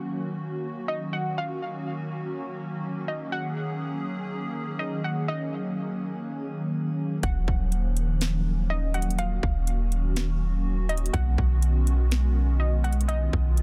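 Dry and densely limited, this excerpt of atmospheric cloud-rap hip hop sits up close, with a hazy, ethereal mood and a half-time feel in 4/4. From the start, a hollow, flute-like pad holds sustained chords, its detuned, vintage tone thickened by ensemble chorus and gently pumping from sidechain compression. Above it, a quiet, warbly lo-fi pluck carries a short melody, its dark, dusty tone blurred by chorus and trailed by digital delay. At 7.2 seconds the low end arrives with a soft, round 808-style bass, deep and up front, while a trap drum kit enters alongside it with a hard-clipped kick, sharp snare and metallic hats, all roughened by overdrive. The harmony moves from a Gb6 colour to Ebm9 as the beat lands, then to B69 at 11.1 seconds, keeping the drifting, dreamy atmosphere to the end.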